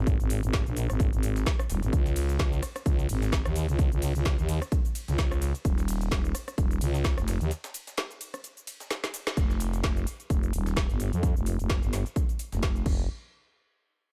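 Bouncy and swaggering, this bass house excerpt runs at 129 BPM in 4/4 with a 16th-note swing, cut from a longer piece. A growling FM bass, thick and sustained with a fast attack, sits up front from the start, its overdrive and sidechain pumping giving the groove its push, and a filter sweep works across it from 9.4 to 13.1 seconds. An overdriven electronic kick, punchy and layered, anchors the beat alongside a garage kit whose woody snare, metallic hats, cabasa, ride, crash and rim clicks carry small-room reverb and their own overdrive. Underneath, a very quiet, pitched-up breakbeat sampler kit adds gritty, compressed hi-hat and snare texture. The opening drop carries a break at 7.5 seconds, a drum fill from 8.9 seconds and a band accent at 9.3 seconds before the track shifts into a new section, all in a dry sound.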